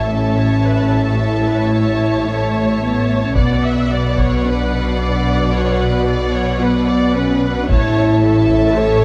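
Drenched in a concert hall's reverb, this short cut from a longer cinematic orchestral score moves at 111 BPM in B minor with a dark, heroic mood. Mellow French horns hold sustained chords up front, while lush bowed violins carry a smooth, vibrato-laden melody over a second violin line and expressive violas with portamento. Rich cellos and close double basses anchor the bass, and a dry taiko ensemble with hard sticks plays in the background from 3.4 to 8.7 seconds.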